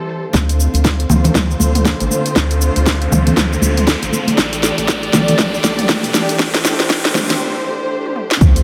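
Driving and warm, this afro house excerpt in D minor moves at 119 BPM with a 16th-note swing, as dark, lush bowed strings hold sustained chords from Dm7 to A7sus4 under sidechain pumping while a round, deep analog bass pumps beneath them. An up-front house kit with a cracking snare, bright hats, shaker and toms drives a build-up full of drum fills and a filter sweep, joined by a punchy overdriven kick and high-tuned, thin-skinned congas sitting further back. An electronic riser climbs from 1.5 to 7.4 seconds before a short break, all within a dreamy mix soaked in plate reverb.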